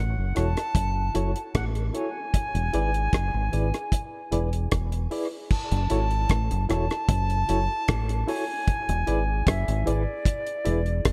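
A pure, distant concert flute sings through dub echo above a round, dark fingered bass and a dry reggae drum kit with a tight kick, both up front, while a reedy electric piano with fast tremolo and its own dub echo adds stabs in this hypnotic, deep dub reggae fragment cut from a longer piece.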